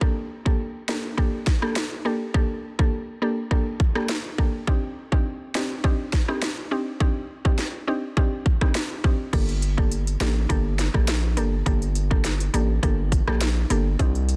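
A hard-hitting, punchy 808-style bass drops in at 9.3 seconds beneath a tight, overdriven electronic drum kit with sharp snare, smooth hats, rim clicks and crashes, while a woody, round mallet-like synth pluck with chorus traces Gmadd9 and Cmadd9 chords in this hypnotic, tough dancehall cut at 103 BPM in G minor, heard through a dense, heavily limited modern master with little reverb.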